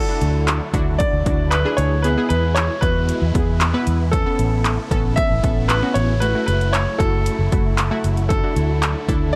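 Dance-pop at 115 BPM with an energetic, driving feel, this short excerpt opens with a brilliant concert grand piano carrying the melody through a delay, alongside a funky, detuned sawtooth polysynth comp treated with chorus and a huge, lush supersaw pad drifting in the background through a phaser. At 0.2 s a round, foam-muted vintage electric bass and a deep house kit of overdriven punchy kick, hi-hat and handclaps join, both up front, while sidechain pumping makes the synths and bass breathe with the beat. The mix is dry and dark, cycling through Dadd9, E, Aadd9 and F#m7.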